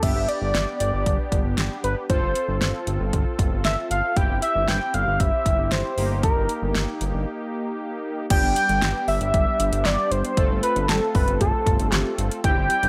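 A light reverb gives this upbeat, nostalgic synth-pop excerpt a gentle sense of space, with the drums, bass and lead sitting up front. At 116 BPM in a straight 4/4 and G mixolydian, a punchy, tape-touched pop drum kit drives the groove with kick, fat snare, metallic hi-hat, handclaps and crash cymbal in a layered, electronic blend. Underneath, a thick, detuned sawtooth analog bass holds a sustained G1 with a filter sweep, while analog synth brass in bold, brassy tones, treated with chorus and vibrato, fills the middle over a progression of G, F/G, C/G and Eb/G. On top, a retro, octave-doubled lead mixing sawtooth and triangle tones sings a mellow melody between A4 and G5, shimmering with its own chorus and vibrato. A brief break from 7.3 to 8.3 seconds sets up a second section at 8.3 seconds that returns to G and F/G before the cut at 12.9 seconds.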